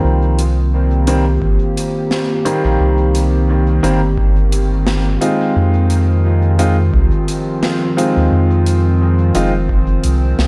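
A warbly, nostalgic pad of sustained chorused chords, woody upright piano stabs trailing dub echo, and a round, mellow sub bass open this spacious, deep ambient dub excerpt in C minor at 87 BPM with a gentle 16th-note swing. An acoustic kit with a fat hall snare and hi-hat joins at 0.4 seconds, followed at 1.4 seconds by an overdriven analog electronic kick. The harmony moves from Cm7 to Fm7 at 5.6 seconds under a light small-room ambience.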